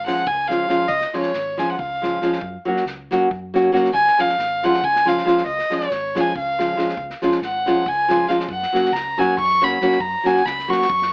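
In a straight 7/8 lilt, this wild, exuberant Balkan wedding-band fragment puts an airy, floating, boxy bowed violin up front, soloing throughout, beside a fingerpicked nylon-string guitar of deep classical tone, while a round, dark hollow-body electric bass and an unplugged kit of punchy kick and medium-tuned snare played with bundle sticks sit in the background, all under moderate studio reverb and an AM-radio sound as the harmony shifts between Db and Gb.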